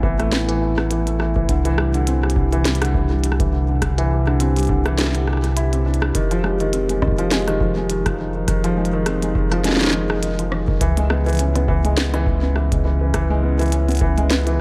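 A dark, warm production with light digital ambience frames this short IDM excerpt, which moves at 103 BPM in 4/4 with a gentle swing on the sixteenths and an intricate, glitchy mood. A felt-muted upright piano sits up front, playing soft, mellow arpeggios through a low-pass filter and digital delay, its audible action noise and short sustain adding a close, personal texture. Beneath it, a warbling, nostalgic pad holds slow-blooming chords, its lo-fi square and triangle tones coloured by chorus, reverb and gritty 12-bit sampler character. A round, sine-like sub bass anchors the low end while a deep, tape-warm electronic kick thumps away, dropping out briefly from 5.0 to 6.1 seconds. A glitchy drum kit of clicky hi-hats, rim clicks and a tiny, overdriven snare skitters over the top, and the harmony drifts from Amadd9 and Cadd9 into Fm7 at 6.1 seconds before settling on Dbm7.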